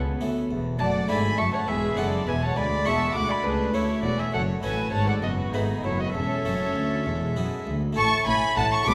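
Wet concert-hall reverb surrounds this brilliant, festive baroque-style concerto movement in a straight 6/8, cut from a longer piece with period-style, gut-string playing throughout. From the start, a dark, nasal viola section and a warm cello section sit in the background beside a rich double bass section and an airy, bright harpsichord. At 0.8 s a reedy solo violin enters up front, joined by one chamber violin section carrying the melody in the background and another playing a close second line, all moving through minor-tinged harmony toward a cadence on A.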